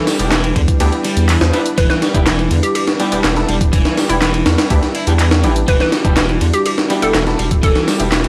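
A gritty, sampler-style breakbeat kit sits up front in this funky, swaggering breakbeat excerpt, its thumpy kick and high-tuned snare joined by hi-hat and ride cymbal, sounding compressed and re-recorded in a small room. Beneath it, a deep, saturated sub bass holds a thick sine tone with a fast attack, while a tape-warm analog drum machine adds handclaps and hi-hat in the background. A crunchy, double-tracked overdriven guitar plays a picked riff through analog delay, and bold, orchestra-hit-like synth stabs cut in with a bright, nasal sawtooth edge and their own built-in reverb. A hollow, bouncy square-wave pluck carries the melody with a mellow, chorused tone, narrowed by an AM radio effect and trailed by analog delay. A dark, moody pad with a slow attack sustains an Em7 chord in the background, pumping against the sidechain, and the whole dry hardware recording is dusted with vinyl crackle.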